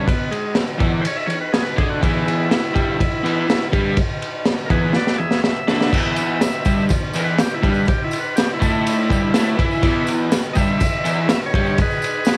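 Rowdy and raw, this garage rock cut from a longer piece drives along in a straight 4/4 with the scrappy feel of a home recording on cassette. A vintage transistor combo organ carries the melody as a solo throughout, its buzzy, clean tone shimmering with light vibrato. Beneath it, a double-tracked electric guitar sits up front with an overdriven, picked riff. The acoustic breakbeat kit, also up front, pairs a punchy kick and high-tuned snare with dark cymbals, sounding saturated and gritty with a rolled-off top, and it plays a fill from 4.9 to 5.9 seconds. At 5.9 seconds a jingly tambourine joins from the background of a live room, while cassette tape grain colours the organ, guitar and drums and a light reverb surrounds the mix.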